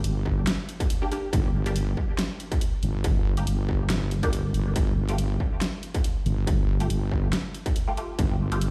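Heard through a big sound system in a bare stone room, this cavernous, dark deep dubstep fragment moves at 140 BPM in a swung half-time feel in G minor, built on a heavy, saturated wobble bass with chorus, a distorted, up-front electronic kick entering at 0.3 s, a dubstep kit with a huge snare and bright hats, and muted, detuned dub chord stabs with phaser and dub echo arriving at 1.0 s, as the harmony shifts from Gm to Fadd9/G at 4.8 s.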